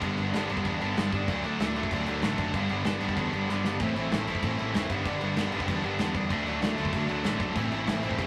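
A straight 4/4 punk rock pulse at 191 BPM drives this urgent, aggressive excerpt. Two bright, double-tracked, overdriven guitars hammer out a picked riff over G, D and Am, one up front and the other sitting in the background, while a growly, punchy picked electric bass holds the low end. A loose acoustic kit with a tight kick, mid-tuned snare and dark crash cymbals fires a quick fill at 3.5 seconds, all caught in a rough rehearsal-room sound with light reverb.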